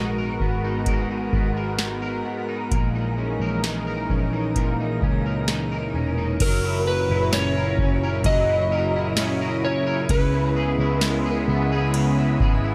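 A light reverb frames this melancholic, haunting dream pop fragment in C# dorian, moving slowly at 65 BPM in a straight 4/4. A smooth, warbling sawtooth pad with a slow attack holds sustained chords under chorus, while a twangy, slightly broken-up electric guitar sits up front playing picked arpeggios through ensemble chorus and delay. A dark, round, foam-muted electric bass anchors the low end, and a booming, tape-warm analog drum machine, re-recorded in a large room, drives the groove from 0.4 seconds with a deep kick, crisp snare, metallic hats, ride, crash and tambourine. The harmony drifts from G#m9 and C#m69 into F#7 and settles on C#m7. At 6.4 seconds a dark, fingered electric slide guitar enters with a delayed melody, singing until 11.4 seconds.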